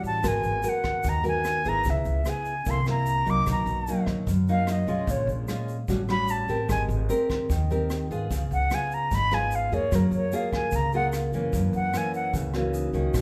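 A band playing live in one room fills a large studio with moderate reverb, giving this intimate, smooth bossa nova a natural, shared space. At 149 BPM in a straight 4/4, a reedy concert flute takes the solo up front with an airy, straight tone and tongued notes, while a bright, fingerpicked nylon-string guitar sits just as close with a classical touch. Beneath them, a woody, thumpy upright bass with gut strings is plucked pizzicato, and a jazz brush drum kit adds a punchy kick, hi-hat and rim click with a dark, rolled-off top, heard in a small-room sound. A grainy egg shaker sits close and dry in the background. Near 10.1 seconds a metallic, ringing vibraphone with medium mallets and slow motor vibrato enters in the background behind the band. The harmony drifts through rich jazz chords such as Abm9, Bmaj7 and Gbmaj9 before this cut from a longer piece ends at 13.2 seconds.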